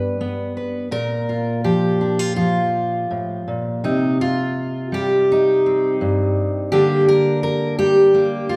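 A fingerpicked steel-string acoustic guitar plays alone, up front with a full-bodied dreadnought tone, in this melancholic, intimate folk excerpt cut from a longer piece at 83 BPM in 4/4. The harmony moves from G and Bb5 into C minor at 3.8 s, then settles on Gm/D at 6.7 s. A wet recital hall reverb with a 1.7-second decay surrounds the guitar, giving it the resonant space of a church or concert hall.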